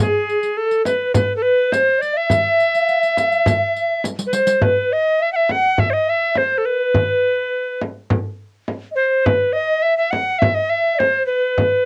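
This home recording on cassette carries a light reverb, cut from a longer Arabic maqam ensemble piece in E maqam hijaz. At 104 BPM in a straight 4/4, the mood is soulful and longing. An alto recorder carries the melody up front, its wooden tone bright, reedy and pure, with a tongued chiff and a cassette-tape colour. A very quiet low ney adds a second line in the same range, breathy, hollow and touched with vibrato. A deep, large frame drum sits close from 0.9 s, while a riq adds dry jingles struck with hard hands, and a drum fill from 4.0 s leads into the second section at 4.6 s, where the riq stops.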